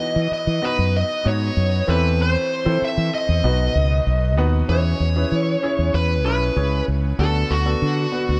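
A dark, smooth overdriven lead guitar opens at 0.0 seconds, picking out the melody between F#4 and E5 over a clear, present grand piano. Both are bathed in shimmer reverb. At 0.2 seconds a fretless electric bass enters, sitting up front with a direct, amped tone that anchors the low end. This is romantic, glossy 1980s-style pop in E major at 96 BPM, played in a straight 4/4. Around 4.7 seconds the harmony moves from B/E, Am/E and B toward E6 and then D6. The whole passage sits in light reverb with a small-room ambience and is cut from a longer piece.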